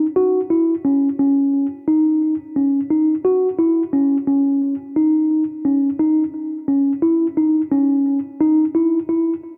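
Counted in a straight nine-eight, this progressive instrumental fragment moves with a driving, brooding pulse from its first beat. A mellow tine electric piano carries the whole passage as a solo voice, placed up front with a clean tone that sounds as if it comes through its own built-in speakers. The part stays in a tight middle register, between C#4 and F#4, and a tape echo trails behind its notes. At 6.3 seconds the music shifts into a new section, and the piano plays on until 9.3 seconds. A light reverb gives the short passage, which is cut from a longer piece, a modest sense of space.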